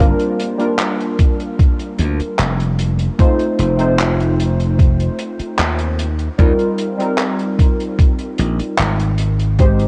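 Worn cassette tape gives this woozy, melancholic vaporwave fragment a wavering pitch, faint mains hum and light small-room reverb. Detuned lo-fi synth keys, mellow and nostalgic with lush chorus and analog delay, move through Gm7, F7, Eb69 and Abmaj7 over a bright, growly slap bass up front, while a dark, smooth soul drum kit with handclaps and hi-hat carries vintage 12-bit sampler grit. A thumpy electronic kick with the same grit joins at 1.2 s.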